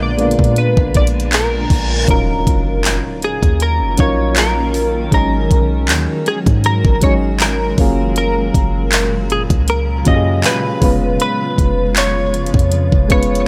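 Contemporary R&B with a sensual, moody feel and a light swing, cut from a longer piece. A clean, compressed electric guitar recorded direct carries the melody through analog chorus and digital delay. Beneath it sit soft, warbling electric-piano-like synth keys, a blurred, evolving granular cloud pad and a deep, boomy 808-style bass, while an up-front electronic drum kit with knocking kick, hi-hat and handclaps joins at 0.2 seconds. A reverse cymbal at 1.5 seconds leads into an impact at 2.1 seconds, as the chords move from Bb7b9 to Ebm9.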